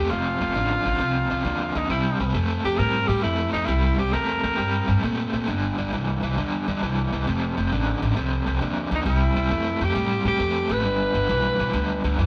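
Heard in a moderate stone room with about a second of reverb, this sounds like a band playing live together, with the tenor saxophone, guitar and upright bass all up front. It is an electric blues shuffle at 134 BPM in 4/4, swung on the eighths in C major, with a swaggering, rollicking mood, and it is cut from a longer piece. The crunchy overdriven guitar plays a picked riff with tremolo through all 12.3 seconds, while the upright bass thumps out a woody, gut-string pizzicato line beneath it. The breathy tenor saxophone carries a clear, vintage-toned jazz melody with vibrato, dropping out at 5.0 seconds and returning at 9.0 seconds. The harmony moves through F7, C7 and G5, then back to F7, C and G.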